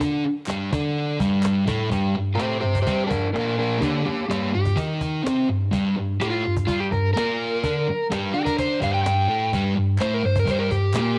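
Garage rock with a menacing, swaggering strut at 126 BPM in G minor, this excerpt from a longer piece sets a dark, double-tracked fuzz guitar riff up front over a snappy, dry cajon struck with hard hands, with very quiet crisp group handclaps at 0.5 and again at 10.0 seconds, while an overdriven slide guitar enters at 2.4 seconds to carry the melody and solo, all wrapped in the light studio reverb and tape grit of a home cassette recording.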